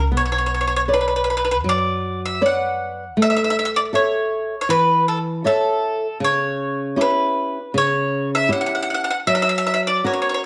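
A moderate echo-chamber reverb gives this short cut from a longer Italian folk serenade a roomy sound, with a passionate, romantic mood at 79 BPM in B minor and straight 4/4. Up front, a picked bowl-back mandolin carries the melody with the shimmer of its doubled strings and a slapback echo, while a fingerpicked flamenco guitar with a warm tone and fresh strings supplies the accompaniment. Beneath them, a pizzicato upright bass on gut strings adds a woody, dark, thumpy low end as the harmony moves from Bmadd9 through A and C#dim to F#.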